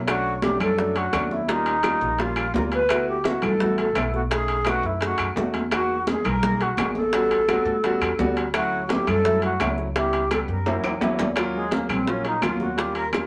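A driving, straight 4/4 groove from bongos, congas, timbales and claves propels this fiery Afro-Cuban jazz passage, with tight, dry bongos played with hard hands up close, high-tuned thin-skinned congas set back in a large room, ringing metal-shell timbales with a vintage, band-limited tone, and woody claves in the background. A pizzicato upright bass with steel strings and a warm concert grand piano, intimate with audible action noise, deep bass and long sustain, carry a progression of rich extended jazz chords. Up front, a bright, reedy alto flute with vibrato, an airy edge and a crisp attack leads the melody, and after a drum fill at 10.7 seconds it takes a short solo from 11.4 seconds.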